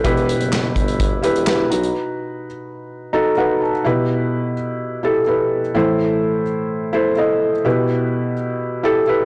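A felt-muted upright piano, a clear tuba and an acoustic country drum kit open this dramatic, bittersweet piano-driven pop excerpt together, moving from E minor to B over a straight four-beat feel. The tuba carries the low end with a punchy, present tone, vibrato and a touch of tube saturation, while the kit's punchy kick, medium-tuned snare, hi-hat and handclaps sit up front. Both drop out at 1.9 seconds, leaving the piano alone through a break, and a soft felt piano fill arrives at 3.1 seconds. The mellow, intimate piano, with its thick felt and audible action noise, then carries the repeated section over E minor, A minor and back to E minor until 9.2 seconds. The whole recording is blown-out and overdriven, set in a small room with light reverb.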